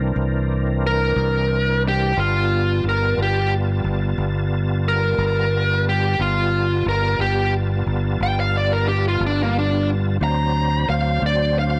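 Laid-back and gritty, this slow blues excerpt in 12/8 moves at 60 BPM in G mixolydian, with an overdriven tonewheel organ holding thick sustained chords through a slow rotary speaker and chorus vibrato while a growly, punchy fingered electric bass sits up front. A bright, smooth overdriven lead guitar enters at 0.9 seconds and carries a picked solo melody over chords that move from C9 to G9 and reach D7 at 10.2 seconds. The sound is dry, with little reverb.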